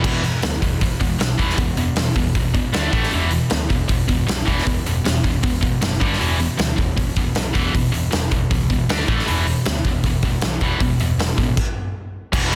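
Driving and aggressive, this hard rock excerpt charges ahead at 156 BPM in a straight 4/4, cut from a longer piece. A bright, high-gain distorted guitar sits up front with a picked, double-tracked riff that moves through E5, D5, A5 and G5 power chords. Underneath, an overdriven picked electric bass adds a growly, amped low end in its own range from E1 to D2. A huge acoustic arena kit with a natural big-room sound drives the track with a punchy kick, a medium-tuned snare, hi-hat and crash cymbal, sitting up front in the mix. The whole band hits a stop from 11.6 to 12.3 seconds, and the chords give way at 12.1 seconds. Light reverb and small-room ambience surround a dense, heavily limited modern master.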